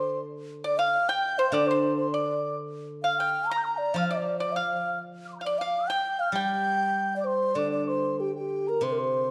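A graceful, tender Chinese traditional chamber piece in G yu mode opens with an airy, close-miked low xiao carrying the melody in a rubato 2/4 around 100 BPM, while a distant, pure dizi with a buzzing membrane adds a high second line. A bright, dry, percussive pipa plays a further second line, and a silvery, ringing steel-string zither plays a low accompaniment. The pipa stops at 7.2 s, just before a brief new section at 7.6 s, and the whole cut-off passage sits in a moderate recital-hall reverb.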